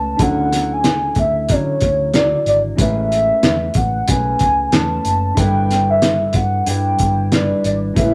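A light 16th-note swing at 93 BPM drives this sunny, dreamy indie and bedroom-pop excerpt: a muffled, cloth-damped drum kit with a fat snare enters at 0.2 s beneath a round, foam-muted fingered bass, a dark, clean electric guitar with warbly pitch drift and a worn, barky tine electric piano in the background, while an up-front detuned lead with chorus, phaser and vibrato carries a nostalgic melody over Dmaj9, Amaj9 and G6 before a lush, airy unison pad arrives at 8.0 s, all in a rough rehearsal-room sound.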